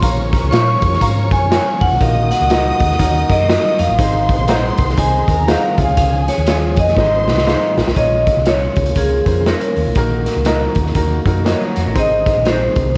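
Passionate and driving, this uptempo 1960s-style soul cut features a metallic, ringing hard-mallet vibraphone carrying the melody and taking a solo from 8.0 seconds, over a lush bowed string section that stops at 7.9 seconds, a natural baby grand piano, a very quiet slow-rotary tonewheel organ, a round, punchy hollow-body bass, a raw garage drum kit with vintage sampler grit and a fill just before the solo, a lo-fi guitar stabbing in the background, and a second, slightly broken-up guitar adding brief spring-reverb riffs.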